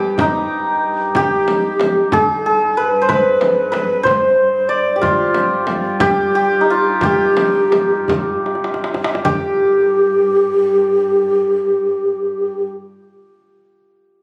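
Stately and warm, this fragment of a Persian modal ensemble piece in dastgah homayun on G moves in a slow 6/8 at 50-62 BPM, with a bright, shimmering hammered santur carrying the melody up front, a breathy, mellow low ney entering at 1.2 seconds with a close second line full of vibrato, a rich, bowed symphonic cello section holding a smooth G drone, and a tight, soft-handed tombak in the background beside a hard-handed, dry frame drum; the tempo slows from 5.0 seconds into a drum fill, after which both drums stop at 9.6 seconds, all heard through a moderate recital-hall reverb captured on a phone in the room.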